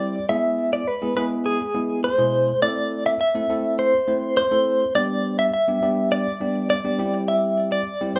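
A rough home demo sound with small room ambience, light reverb and digital ambience frames this brief, energetic pop fragment cut from a longer piece. A clean, direct-recorded electric guitar carries the confident melody up front, its picked, compressed tone colored by tremolo and digital delay, while a bright, bell-like tine electric piano plays accompaniment beneath it throughout. The chords move from E to Am, then G, arriving on C at 7.0 seconds.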